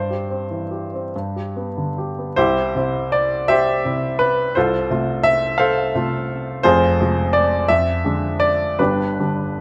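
A warm, intimate baby grand piano sits up front in this short fragment of a romantic character piece, its action noise audible as it plays alone across a range from deep bass to the upper middle register. The feel is hopeful and passionate, moving in six-eight with uneven, rubato beats, and the harmony darkens briefly into a minor chord around 6.6 seconds before settling toward the dominant at 8.8 seconds. A moderate recital-hall reverb gives the sound a sense of space, and the piece carries on past the point where this recording is cut.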